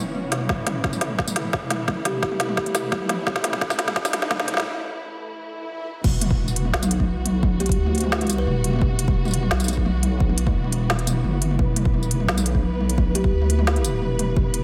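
Half-time drum and bass with a dark, spacious mood, this excerpt opens on a deep, wobbling bass with chorus and a lush, distant string section whose sustained chords pump under sidechain compression, joined by a hard-clipped electronic kick, while an overdriven drum kit with a woody snare and smooth hats sits up front and a faint, bright gated texture pulses until 4.7 seconds. A very quiet riser, swell and impact carry the build-up and short break into the drop at 6.0 seconds. A ringing kalimba, low-pass filtered and touched with tape echo, surfaces in brief plucked phrases from the background.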